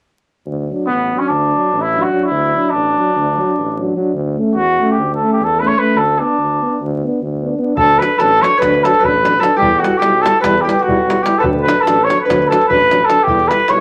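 Wild and exuberant, this Balkan brass band excerpt moves in free time in D major, with a mellow, roomy trumpet carrying the melody up front over a punchy tuba bass and two dark trombones, one with soft-attack vibrato set in the background and the other smooth-topped with light vibrato. At 7.8 seconds a fingerpicked concert harp adds a ringing second line and a tight, close, dry davul joins on percussion, while the chords move from D through A/D and Bm/D before settling between D and Em. The whole piece sits in a moderate club reverb under a layer of vinyl crackle, and the warm tuba anchors the classical-style brass.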